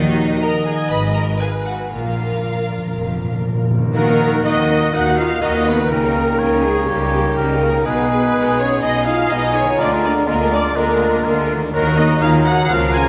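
A straight 4/4 pulse at 123 BPM drives this stormy, dramatic romantic orchestral excerpt in Eb minor, where a lush, distant violin melody sits very quietly over a focused second violin line, an intense, up-front viola accompaniment, ringing harp arpeggios and smooth bowed cello and double bass lines; round timpani play a fill from 1.9 to 3.9 seconds, a mellow bassoon enters as the fill ends, and from 4.0 seconds a clear clarinet, a close-miked oboe, a hollow silver flute and soft-attack French horn chords join inside a wet concert-hall reverb.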